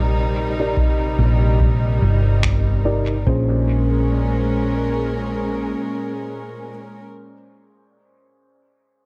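Intimate bowed chamber strings, played sul tasto with light vibrato, hold sustained chords up front beside a round, punchy hollow-body electric bass in this deep, spacious ambient dub fragment with a swung sixteenth feel. A dark, woody upright piano enters at 0.6 seconds with boxy stabs through dub echo and a low-pass filter sweep that runs until 3.3 seconds, when the harmony shifts from Cm7 to Bbm7. An overdriven analog kick sits in the background of the echo-heavy mix, and muffled, pitched-down finger snaps flicker briefly at 2.4 seconds.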